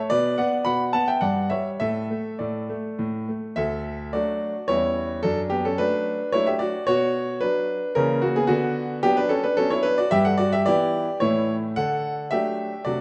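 Graceful and elegant, this short passage from a classical-period piano sonatina in a rubato three-beat metre features a solo grand piano with a smooth, vintage tone, placed up front in a moderate recital-hall reverb, opening in minor-key shadings before turning at 3.6 seconds toward brighter harmony that settles home on a major chord at 11.8 seconds.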